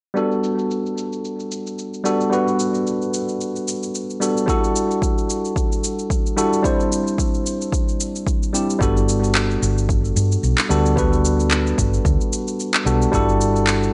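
Sunset chillout in G major at 111 BPM, this blissful, sunny excerpt cut from a longer piece moves with a gentle 16th-note swing in 4/4. A mellow tine electric piano carries the accompaniment from the start, sitting up front with a worn, slightly out-of-tune character, softened by a low-pass filter and trailed by tape echo as it moves through Gmaj9, Em11/G and Cadd9. Electronic shaker and handclaps, filtered and tape-tinged, enter almost at once, and a punchy, layered electronic kick drum joins at 4.5 seconds. At 8.8 seconds the harmony returns to Gmaj9 and a hollow-body short-scale fingered electric bass arrives, dark and round in the low register from G1 to G2. The whole mix is soaked in plate reverb and digital ambience, giving it a dreamy haze with its top end rolled off.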